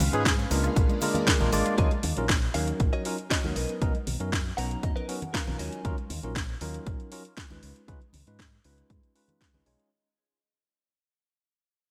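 This nu-disco excerpt opens on a drop, with a lush string machine holding sustained chords over a very quiet, detuned analog pluck playing arpeggios; the pluck stops at 1.7 seconds and the strings at 1.8. Underneath, a fingered electric bass with an envelope filter pumps against the kick. A house drum kit with a cracking snare and bright hats, overdriven and up front, is joined at 0.3 seconds by a punchy, overdriven electronic kick, while close congas and cabasa sit in the background. The piece moves at 118 BPM in straight 4/4 in Eb minor, with a sensual, sleek mood and chords cycling through Ebm7, Bmaj7 and Db7. A clean tine electric piano carries the accompaniment throughout with pumping and digital delay. From 1.8 seconds a compressed, picked clean electric guitar, recorded direct, plays a riff soaked in chorus, delay and 12-bit sampler grit, and adds a fill from 4.3 seconds as the music fades out. 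The mix has a bright 1980s-style digital sheen with light reverb.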